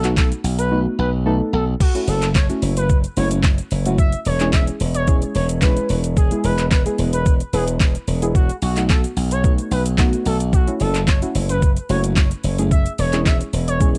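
A bright, punchy slap bass sits up front in this driving, confident dance-pop fragment, its glassy electric tone pumping against the sidechain throughout. Beside it, a smooth electronic R&B kit also sits up front, with a knocking kick, fat snare, metallic hi-hats, handclaps, shaker and crash cymbal carrying a tape-warm character. The drums drop out briefly from 0.7 to 1.8 seconds before the groove lands again at 1.8 seconds. Deep, mellow chord stabs with a fast attack and decaying tail fill the middle, their soft vintage synth tone warbling through chorus and a filter sweep as they move through B7, F#m7, C#m/E and E. Over the top, an expressive sawtooth lead glides between notes with portamento and vibrato, its sustained, mellow tone coloured by chorus, sidechain pumping and dub echo. The production is dark and warm with little reverb, keeping every part close and dry.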